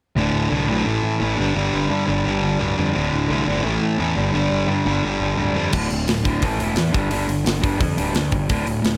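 Punk rock with an angry, urgent mood, cut from a longer piece and driven by a straight 4/4 pulse. From 0.2 seconds, a bright, compressed distorted electric guitar and a sludgy overdriven guitar play the riff together up front over a growly, fuzz-laden picked electric bass, all cycling through D5, A5 and G5 power chords. At 5.7 seconds the sludgy guitar stops and a tight metal drum kit enters, its crash cymbal, hi-hat, medium-tuned snare and tight kick sitting up front in a studio room sound. The remaining guitar and bass carry the same chord cycle with the drums through to the close, under a light reverb.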